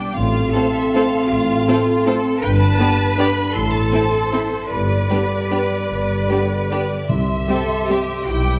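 Elegant and sweeping, this classical excerpt moves in a rubato 3/4 between 143 and 172 BPM in C major, tuned slightly low to A4 = 437 Hz. A rich, close chamber violin section carries the expressive, vibrato-laden melody, while a dark solo clarinet and an airy flute section with rolled-off highs weave second lines, the flutes sitting in the background. A ringing concert harp spins fingerpicked arpeggios beneath, and a lush symphonic cello section joins a smooth, even chamber double bass section, which enters at 0.2 s, to anchor the low end. From 0.5 s to 8.0 s a soft-attack studio violin section adds a background second line with portamento, a very quiet, focused viola section fills in accompaniment, and a mellow French horn section holds sustained chords with light vibrato. The harmony passes from F/A through G and Am before settling on C at 7.1 s, where a dry, articulate timpani struck with hard mallets sounds until 7.7 s, all set in a generous scoring-stage reverb.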